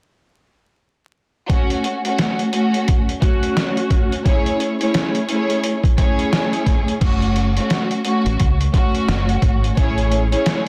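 A swung 87 BPM boom-bap hip-hop groove in F# minor sets a reflective, moody tone, with pitched-down, muffled sampler-style drums (a thumpy kick, medium-tuned snare, hi-hat and crash) and a lush, distant bowed string ensemble with vibrato and portamento moving between F#m and Amaj7, while a dark, round, foam-muted fingered electric bass joins at 7.0 s, the whole excerpt set in digital ambience with vinyl crackle and a dense, heavily limited master.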